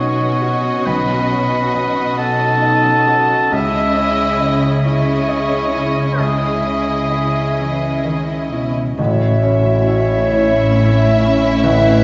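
Hopeful and tender, this rubato orchestral film cue in A lydian moves slowly at 45 BPM in 6/8. A bowed violin section carries the melody with vibrato, joined by a second violin line and a mellow oboe with a soft attack that sits up front before dropping out at 8.5 seconds. Beneath them, a muted upright piano with thin felt and audible action noise, a very quiet ringing harp playing arpeggios, a dark viola section with portamento in the background, and a warm cello section on the bass hold the harmony as it moves from Badd9 to C#madd9. At 9.0 seconds the music opens onto an A chord as a mellow clarinet, a distant horn section holding sustained chords and a double bass section join in. A wet scoring-stage reverb places the ensemble further back in the room, giving the sound a soft, rolled-off top.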